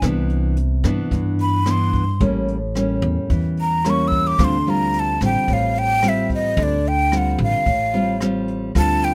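Close, detailed microphones and a dry sound give this short bossa nova cut an intimate, smooth character, with a breathy jazz flute sitting up front. Moving at 110 BPM in a straight 4/4 and in D minor, the flute carries the melody as a solo until 8.7 seconds, its hollow, mellow tone shaded with vibrato and a crisp chiff on each attack. Fingerpicked nylon-string guitar, also up front, gives classical-flavoured accompaniment through Cmaj9, A7b9 and Dm7, while a woody, growly pizzicato upright bass anchors the low end. A brush drum kit with a boomy kick, hi-hat and rim click keeps time with a natural small-room sound. A concert grand piano appears only briefly in the background, at the very opening and again from 8.8 seconds, its vintage tone carrying audible action noise.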